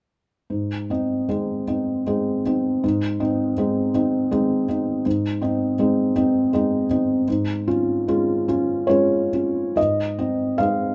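Close, detailed microphones and light reverb put a felt-muted upright piano up front, its soft, mellow tone and audible action noise giving the recording an intimate, natural feel. This is a short cut from a longer romantic nocturne for solo piano in Ab major, tuned to A4 = 438 Hz, with a dreamy, tender mood. In 3/4 and played with rubato, the tempo moves between 65 and 84 BPM, and the piano ranges from Ab2 to F5. The opening section rests on Ab, shifts to Db over an Ab bass at 7.3 seconds, and returns to Ab for a brief new section that closes at 10.9 seconds.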